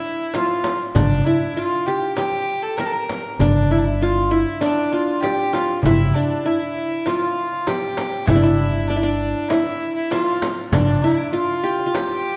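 Up front, a bright-edged qanun played with fingerpicks carries the soulful, longing melody of this Arabic maqam ensemble piece in straight 4/4. Its triple strings ring over a distant, reedy bowed violin that traces a second line in a dark, nasal gut-string tone. A small, high clay darbuka played with soft hands, compressed and saturated, joins at 0.3 s alongside a frame drum struck with hard hands, while a woody, thumpy pizzicato upright bass enters at 0.9 s and stops at 11.0 s, all within a wet recital hall reverb in this short cut from a longer piece.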